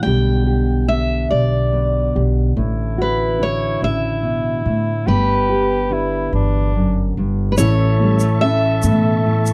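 Acoustic folk in a gentle, nostalgic mood, this short excerpt moves at a slow 48 BPM in 6/8, with an up-front picked steel-string guitar carrying the melody over a dark, full-bodied nylon-string guitar and a woody, growly pizzicato upright bass, while a dark soprano saxophone with light vibrato adds a second line from 2.6 seconds. At 7.6 seconds the chords shift to A and the texture fills out: a felt-muted upright piano plays soft, mellow arpeggios, a grainy egg shaker joins, and a reedy tonewheel organ holds sustained chords in the background through a slow rotary speaker. The sound is dry and close, like a 1970s studio session, with only light reverb and audible finger squeak on the steel-string guitar.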